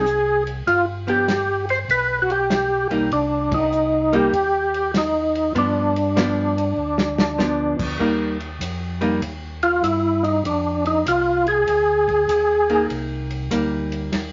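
A lightly overdriven, percussive tonewheel organ opens this smoky, late-night soul jazz organ trio groove, carrying the melody up front through a slow rotary speaker and chorus vibrato. A clean, hollow-bodied archtop guitar comps beside it from the start, also up front, while a second, round and mellow tonewheel organ supplies the bass line with a touch of key click and its own slow rotary spin. A dry, acoustic soul drum kit joins a split second later, with dark cymbals, a medium-tuned snare and a tight kick swinging in an easy four. Early on the band hits a brief accent together and the drums play a short fill before the music moves into a new passage at 8.0 s, where a tonewheel organ solo begins and carries through to the end of the clip. The whole trio sits in a wet studio reverb with a rolled-off top that keeps the sound dusky and intimate, and the clip is cut from a longer piece.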